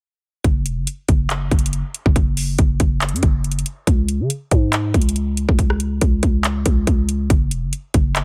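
A growling, buzzy 808-style bass with a fast attack and decaying sine body enters at 0.4 seconds alongside an up-front electronic trap drum kit of hard-clipped kick, metallic hi-hats, handclaps and rim clicks, setting an eerie, brooding half-time hip hop groove at 140 BPM in 4/4 that runs to 8.2 seconds, with little reverb and a dense, heavily limited modern master on this short cut from a longer piece.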